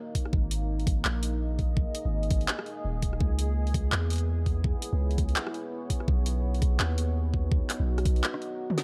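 Half-time drum and bass at 167 BPM with a swung 16th feel, tense and spacious, in which a dark, detuned sawtooth pad with chorus, reverb and sidechain pumping holds sustained chords moving from Absus2 through Dbm7 to Badd9 beneath an up-front, overdriven kit of woody snare, bright hats, handclaps, rim clicks and toms, a knocking electronic kick, and a long, deep, mellow sine 808-style bass with a fast attack, until a break at 8.2 s and a drum fill at 8.7 s close the excerpt.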